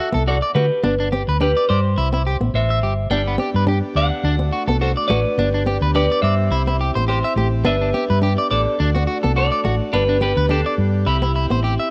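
Highlife at 106 BPM in G major, sunny and warm, with a lightly swung 16th-note feel and chords cycling through D, G and C in this short cut from a longer piece. A clean, picked semi-hollow electric guitar carries the melody with spring reverb, over arpeggios from a slightly broken-up electric guitar, a boxy fingerpicked acoustic guitar in the background and a round, dark hollow-body bass sitting up front. At 3.1 seconds a buzzy, overdriven vintage combo organ joins with sustained chords bathed in its own spring reverb, all set in a light digital ambience.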